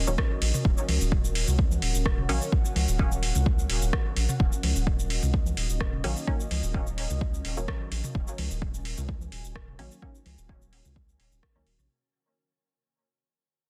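The recording is dense and heavily limited, with little reverb, and it is cut from a longer dub techno piece in Eb minor at 128 BPM, tuned to A4 = 436 Hz, with a slight 16th-note swing. An overdriven, layered kick sits up front. Around it, a tape-warm vintage rhythm box, re-recorded in a large room, ticks out metallic hi-hats, rim clicks and shaker, while dry electronic toms and congas pump quietly in the background. A round analog bass, built from sine and triangle tones, holds the low end under a deep, moody sawtooth pad that sustains an Ebm7 chord with chorus, built-in reverb, 12-bit sampler grit and sidechain pumping. A muted, detuned chord stab with filter pluck, phaser and dub echo drops out at 2.5 seconds and returns at 6.0 seconds. The meditative groove fades out from 4.4 seconds onward.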